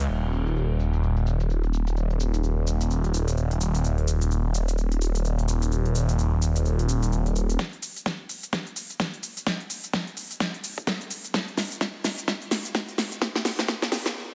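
Bouncy and aggressive, this bass house excerpt runs at 128 BPM in 4/4 with a 16th-note swing, opening on a swirling, thick detuned saw bass that sits up front with phaser, overdrive and sidechain pumping until 7.6 seconds, over a big-room dance drum kit of huge snare, crisp hats, shaker and crash, filtered and given a tape-warm studio reverb. At 7.6 seconds a punchy, layered electronic kick joins as the drums launch into a build-up and fill, and the whole thing stops dead at 14.2 seconds. The mix is dry overall, with a high-pass filter across it.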